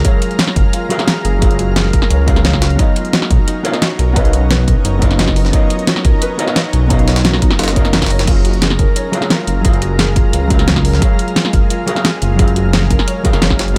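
Driving straight 4/4 drums at 175 BPM anchor this dreamy liquid drum and bass excerpt in F# major, where a punchy layered electronic kick, an up-front pop kit with a fat snare, metallic hats and crash, and a gritty, pitched-up sampler-style jungle kit with high-passed hats and a high-tuned snare underpin a deep, rumbling detuned saw bass, while a clean hollow-body jazz guitar and a soft, boxy felt-muted upright piano playing arpeggios both trail dub echo over a shimmering, ethereal granular pad as the chords move from F#maj9 to Bmaj9#11 at 2.8 seconds and back at 8.3 seconds in a dry, close mix.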